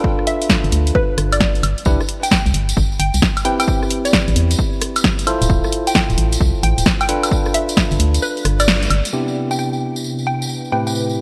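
An up-front, organ-like FM bass anchors this soulful, bouncy two-step garage excerpt, its dark, percussive notes thickened by tube saturation. Around it, a punchy analog drum machine supplies snare, hi-hat, rim click, woodblock and crash cymbal, each softened by a low-pass filter, while a layered electronic kick drives the 132 BPM groove in 4/4 with a swung 16th-note feel. A jingly tambourine joins at 1.9 seconds. A bell-like tine electric piano plays clean, filtered stabs through G7, Am7 and Dm7 in C major, and a hollow, detuned square-wave pluck carries the melody with chorus and delay. The kick drops out just before a full band accent, and at 9.1 seconds the harmony settles on Cmaj7. At 10.0 seconds a warbling, nostalgic tape-like pad enters in the background with sidechain pumping and reverb, all framed by bright 1980s-style digital production.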